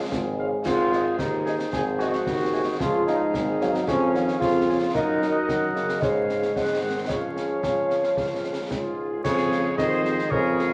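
A proud, spirited military-style march for wind band in a straight 2/4, this short cut from a longer piece opens with the full low brass and woodwinds sounding together from the first moment. A clear tuba carries the bass while a trombone section holds sustained chords, and a euphonium and a woodwind section sit further back with second lines of their own. Concert snare drum, concert bass drum and clash cymbals with a dark cymbal tone come in at 0.1 seconds, and at 0.4 seconds a mellow solo cornet takes the melody with light vibrato and a smooth top, backed by a distant, roomy French horn section playing accompaniment. Near the close, at 8.7 seconds, a hollow, pure flute section adds a soft-attacked, distant second line with vibrato. The band is bathed in a large studio reverb and overlaid with vinyl crackle.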